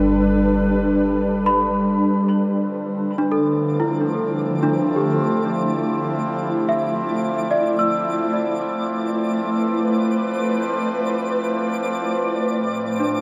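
An up-front, ethereal, full-bodied pad with ensemble chorus holds sustained chords through this serene ambient excerpt at 73 BPM in 3/4, opening with a filter sweep over a deep, ominous, rumbling drone that stops at 2.5 s. A delicate, slightly out-of-tune celesta with tape echo plays bell-like arpeggios, a reedy, breathing harmonium drones beneath, and a faint, twinkling granular texture with octave-up shimmer fades in from 3.4 s, all set in a vast, echoing cathedral reverb as the harmony moves from G7 through Dm7 and Am7 to F/A.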